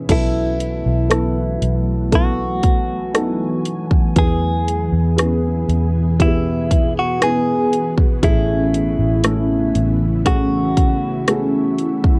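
A slow, straight 4/4 pulse at 59 BPM carries this hopeful, tender pop ballad excerpt, with an up-front electronic pop kit of punchy kick, hi-hat, rim click and crash, and a round, foam-muted vintage electric bass. A dark, woody upright piano accompanies while a detuned, ethereal pad with ensemble chorus and built-in reverb holds sustained chords, the harmony moving from B7sus4 to E to Amaj7. Over them, a clean, compressed electric guitar recorded direct picks a narrow melody through a phaser, all captured in a dry, close 1970s-style studio sound.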